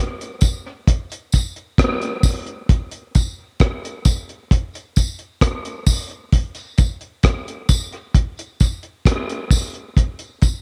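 A dark, dry reggae drum kit sits up front from 0.2 s, its tight kick, hi-hat and rim clicks carrying a rolled-off top and a cassette-tape softness at a slow, straight 66 BPM in 4/4. A quieter tambourine joins at 0.4 s with a small-room character and a dub echo trailing behind it. A moderate spring reverb and the feel of a home cassette recording give this short, meditative fragment of a longer piece a spacious atmosphere.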